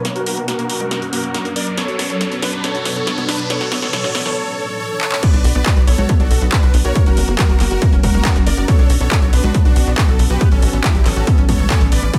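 Lightly reverberant, this emotional, bittersweet uplifting trance excerpt in B minor at 139 BPM opens with a build-up where a filter sweep moves across huge, detuned supersaw chords carrying the melody, an electronic riser runs until 4.4 seconds, and an overdriven techno drum kit with a punchy snare, congas, claps, hats and cymbals plays a fill. Beneath, a shimmering, ethereal pad with phaser and 12-bit sampler grit holds dark sustained chords, while a round analog pluck with dub echo spins arpeggios in the background, both pumping to the sidechain. At 5.2 seconds the drop lands with a heavy, up-front overdriven kick and a tight, driving sequencer bass with wave-folded sawtooth bite, cycling through Bm, F# and A.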